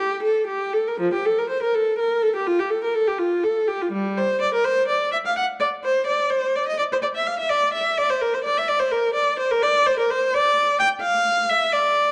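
Radiant and dance-like, this brief passage is a baroque-style suite movement for unaccompanied viola, cut from a longer piece. A single bowed viola carries the whole 12.1 seconds in 12/8 with a free, rubato feel, ranging from F3 up to G5. Its tone is rich and close, placed up front, with soft attacks, singing vibrato and expressive portamento sliding between notes. A moderate recital-hall reverb of 1.3 seconds surrounds the instrument, and the dark, warm production lends the sound a gentle depth.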